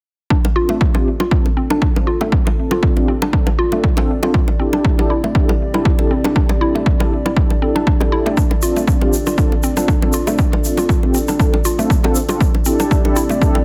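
Afro house with a warm, earthy mood, this fragment from a longer piece moves in a gently swung 4/4 over chords alternating between Dm7 and C69. A punchy, overdriven electronic kick sits up front, joined by round, low-tuned bongos played with hard hands in a close, dry sound. A woody, FM-style mallet pluck spins arpeggios with chorus, delay and sidechain pumping. Mellow synth brass stabs add a brassy, detuned sawtooth tone shaped by a filter sweep and a moving notch. Beneath them, a deep, moody analog pad holds sustained chords with ring-modulated shading and a slow attack. A grainy, bright egg shaker enters at 8.4 seconds, and light reverb gives the mix a digital ambience.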